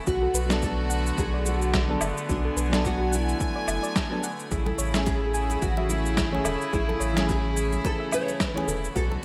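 A fingerpicked nylon-string guitar carries the melody in this blissful sunset chillout excerpt at 108 BPM in A major, its classical tone softened by ensemble chorus and digital delay over a reedy, gut-string chamber string section holding sustained chords on Bm7 and then Amaj7 at 4.5 seconds. A dark, detuned pluck arpeggiates in the background while mellow electric-piano-like synth keys add accompaniment, a deep sine sub bass sits up front, and a punchy layered electronic kick pairs with a gritty, overdriven shaker, snare and woodblock kit swung on the 16ths, with thin-skinned congas joining at 4.7 seconds. The gleaming 1980s-style digital production is bathed in a lush hall reverb.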